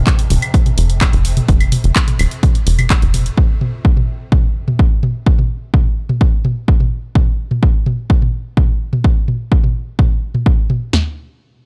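This hypnotic, dramatic slice of melodic techno at 127 BPM opens on a tight, punchy sequencer bass with a plucky sawtooth bite, pumping beneath a swarming, nasal drone of detuned unison tones that sits in the background under reverb and phaser. A layered house drum kit enters almost at once, with a punchy kick, snare and toms up front alongside claves, handclaps, hi-hat and more toms, both layers tape-warm in a studio reverb. Around 3.3 to 3.4 seconds the bass and drone drop out, and the drums carry on alone in a digital ambience until the cut at 11.0 seconds.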